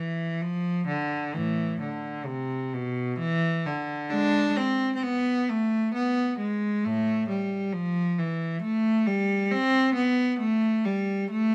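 This classical, baroque-style suite movement features unaccompanied cello in A minor, moving in a flowing 3/4 at about 66 BPM with a rubato feel. The mood is radiant, and the single bowed cello carries the whole passage from 0.0 to 11.5 seconds, ranging from A2 up to D4. Its tone is rich and focused, with expressive vibrato and a smooth top end, and it sits up front in the sound. A light reverb lends the room a gentle sense of space around the lone player. Tuned slightly above standard pitch at A4 = 441 Hz, the passage is cut from a longer piece.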